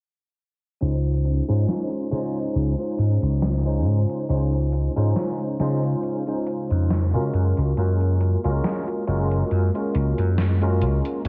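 Vaporwave at a slow, lightly swung 69 BPM in Db major, dreamy and woozy, where a punchy, up-front slap bass anchors a clean tine electric piano washed in ensemble chorus and tape echo, a very quiet warbling, detuned pad enters at 1.9 seconds, and a sampler-style drum machine ticks hi-hat and gated, overdriven snare, all moving from Dbmaj9 to Gbmaj9 at 7.3 seconds under a filter sweep and dark, cassette-toned production in this brief cut from a longer piece.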